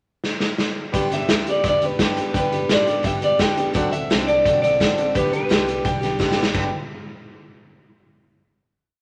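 Rollicking and rowdy, this short rockabilly piece at 171 BPM in G major opens with a drum fill from a saturated, gritty garage kit with a punchy kick and shuffle groove up front, then at 0.9 seconds a bright, full-bodied acoustic guitar strums eighths in open chord shapes beside a woody upright piano's triads and a thumpy, pizzicato upright bass walking in the background, while a twangy, slightly broken-up electric guitar plays hook phrases from 1.1 seconds as the chords move from G to D7 and back before another fill leads to a final chord in a small room.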